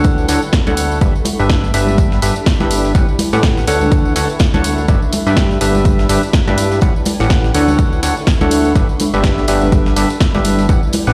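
Played through a big sound system in a bare stone room with light reverb, this uplifting, feel-good piano house excerpt at 124 BPM swings over a hollow, up-front organ stab riff cycling Dmaj7, G6 and A13, with a plucky, funky analog bass and a blurred granular cloud pad in the background both pumping to the sidechain, an overdriven, punchy electronic kick up front, a dry analog drum machine snare, rim click and hi-hat entering at 0.3 seconds, a very quiet, gritty breakbeat sampler kit, and ringing tambourine and congas set back in the mix.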